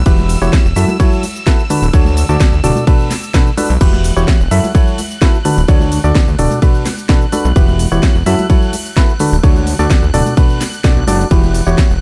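A dark, warm mix sets this energetic, soulful piano house cut, taken from a longer piece, at 128 BPM in E dorian, with a punchy layered kick up front and a house kit of cracking snare, crisp hats, crash, ride and shaker, while ringing, close tambourine and congas sit in the background. A fat, detuned sawtooth bass with an evolving filter sweep and a hollow, percussive organ stab with chorus and delay both pump against the kick up front, the stab riffing through Emadd9, F#m7, Dmaj7 and Bm7. Behind them, a shimmering vintage string machine holds high sustained violin chords with ensemble chorus across the full 12.0 seconds.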